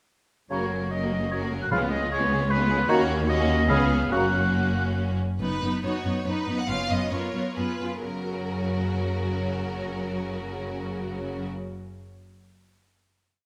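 An up-front oboe carries the melody with lush, vibrato violins in this graceful, cheerful symphonic movement in F# major and 3/4, fast but rubato and slowing from 4.8 seconds, while a second violin section, violas with a rocking two-note figure, sustained cellos, pizzicato double basses, short accented chords from flute, clarinet, bassoon and very quiet, punchy French horns, and a hard-mallet timpani stroke at 1.7 seconds fill a reverberant recital hall before the winds drop away and the strings settle on a final chord at 8.0 seconds.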